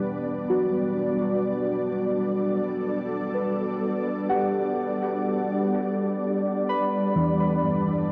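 Ambient music, weightless and serene in a slow, unhurried triple metre, with an ethereal, airy pad holding sustained chords beside muted, felt-like synth keys playing dark, intimate arpeggios through chorus and tape echo, while a very quiet, warbling analog drone sits beneath until 5.8 seconds, all bathed in a huge reverb and a cassette-tape sound in this short cut from a longer piece.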